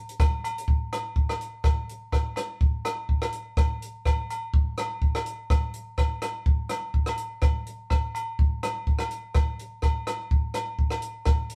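Recorded as a band playing live in one room with a light reverb, this short highlife passage from a longer piece has a sunny, danceable mood at 124 BPM in 4/4, its sixteenths lightly swung. A compact cocktail drum kit sits up front from 0.1 seconds, dry and natural, with hi-hat, rim click and a punchy kick. Agogo bells join at 0.2 seconds further back in the mix, their ringing tone compressed and saturated.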